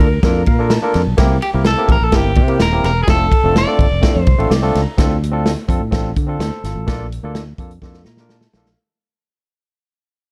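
Uptempo 1960s-style soul at 126 BPM in a straight 4/4, joyful and danceable, where a twangy, slightly broken-up electric guitar carries the melody until 4.5 seconds over a barky, lightly overdriven tine electric piano that adds fills, a round, punchy fingered electric bass, and an up-front natural country drum kit with a punchy kick and medium-tuned snare on hi-hat and ride, all set in a small room with light reverb and a dark production, moving through Bbmaj7, C7 and F6 before shifting to Dm7 as the music fades out from 5.0 seconds and closes on a drum fill at 7.8 seconds in this cut from a longer piece.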